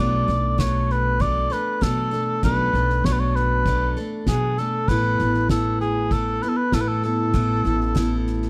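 A straight 4/4 pulse at 98 BPM carries this pastoral, nostalgic passage of acoustic folk, cut from a longer piece and moving from Bm7 to Asus2 at 4.9 seconds. Up front, a mellow cor anglais sings the classical-style solo melody with vibrato and a punchy edge, beside a bright, full-bodied picked jumbo steel-string guitar accompaniment, while a woody, thumpy pizzicato upright bass anchors the low end. A soft-mallet acoustic drum kit enters at 0.3 seconds with a fat snare and boomy kick of big-room character, all within a dry, close 1970s-style studio sound.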